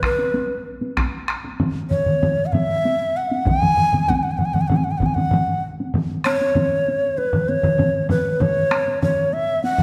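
Powerful and ceremonial, this Japanese traditional taiko ensemble piece, cut from a longer work, is led by a breathy, bright shakuhachi whose vibrato melody sits close and up front, its notes opening with a crisp, chiffy attack. Beneath it, a compressed, saturated solo taiko struck with heavy sticks plays alongside three taiko ensemble parts: two roomy parts, one with heavy sticks and one with hard sticks, and a close, dry heavy-stick part. The close, dry ensemble drops out at 5.2 seconds, shortly before the music moves into a new section at 5.9 seconds, all set within a reverberant recital hall.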